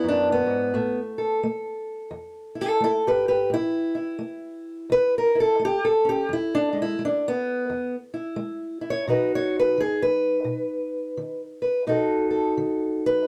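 Acoustic country blues with a rollicking, swaggering mood at 86 BPM in a swung 4/4 in E major, this short excerpt features a solo fingerpicked steel-string parlour guitar, boxy and up front, moving through E7, A7, E and B7 within a dark production and moderate studio reverb.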